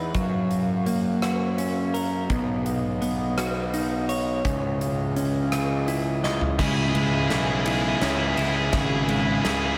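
A reedy, breathing harmonium holds sustained chords in the background as a twangy clean electric guitar arpeggiates through tape echo and a growly fuzz bass sits up front, with a huge arena drum kit of punchy kick and bright cymbals driving this soaring, cinematic 6/8 post-rock fragment at 56 BPM through F#, Badd9 and C#madd9 until a drum fill at 6.2 seconds launches a build-up on C#m where an overdriven electric guitar riff enters at 6.6 seconds.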